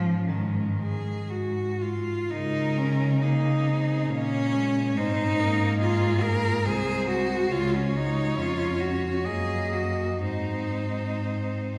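Four bowed cellos sound together from the first moment of this serene, lyrical classical fragment in Db major, moving in a flexible rubato 3/4 at roughly 57-73 BPM: a clear cello with vibrato carries the melody, a rich, close cello sits up front on a second line, a smooth, distant cello fills in the accompaniment in the background, and a focused bass cello anchors the low end, all set within a long, wet church reverb.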